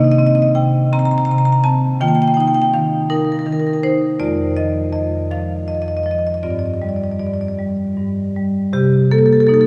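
A solo marimba played with medium hard mallets opens this short excerpt of a contemporary classical piece, its full, close tone sitting up front. The mood is reflective and flowing, carried by a compound metre with a straight feel. The harmony moves unhurriedly from Cm9 through Ebadd9, Fm7 and G7sus4 before settling on Cm7 at 8.7 seconds, with the instrument ranging from its deep lower register up to bright upper notes. Although the marimba itself is captured dry, the recording places it in a vast, echoing cathedral-like space whose long reverberant tail lingers around the notes. The passage lasts just under ten seconds and is lifted from a longer work.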